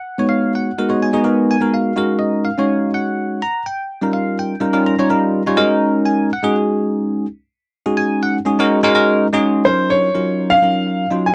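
A dry, close 1970s-style studio sound with light reverb frames this slick, driving swung jazz excerpt, where a bell-like, bright tine electric piano with analog chorus carries the accompaniment through ninth and sixth chords, and a smooth, vintage grand piano with short sustain joins up front with the melody at 9.7 seconds.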